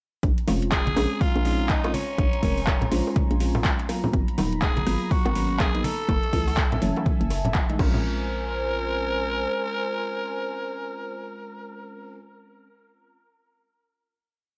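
A breathy, raspy tenor saxophone sits up front in this deep, warm deep house piece, entering at 0.7 seconds with hook-like motif phrases, vibrato and a touch of analog delay. Beneath it, a punchy, overdriven four-on-the-floor kick and a gritty 12-bit drum kit of metallic hi-hats, rim clicks, handclaps and crash drive a swung groove, while bright, compressed bongos and congas add syncopated hand-drum accents. A hollow, bouncy FM bass pumps against the kick with a syncopated, tube-saturated riff, and a mellow, round FM electric piano plays warbling chord stabs, one shape moved in parallel, through chorus and tape echo. A smooth, nasal analog pad holds sustained minor ninth chords quietly in the background, moving from Bbm9 through Abm9 and Gbm9 before returning. The drums drop out at 7.9 seconds, the hand percussion at 8.0 seconds and the bass at 9.5 seconds, so saxophone, piano and pad ring out the final hit, all with the dry, slightly worn character of cassette tape.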